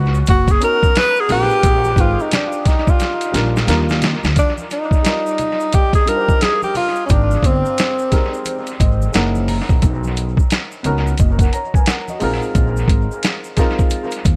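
A woody pizzicato upright bass opens this cool, smooth slice of jazz-hop, cut from a longer piece, with maracas and congas tapped by soft hands tucked into the background. A gritty, compressed boom bap drum kit, pitched down and sampler-style, arrives almost at once with a thumpy kick, a medium-tuned snare and hi-hat, riding a swung sixteenth-note feel. A breathy tenor saxophone leads up front in a mellow jazz style, its subtone, scooped notes and light vibrato carrying a solo through the opening section as a drum fill joins at 3.0 seconds, and it falls silent at 8.8 seconds. A dark grand piano with short sustain comps underneath and steps forward with a fill at 8.5 seconds as the harmony moves through lush chords such as Abmaj9 and Gb13. Dub echo trails the saxophone, drums, piano and percussion, giving the mix a spacious, echo-heavy studio ambience.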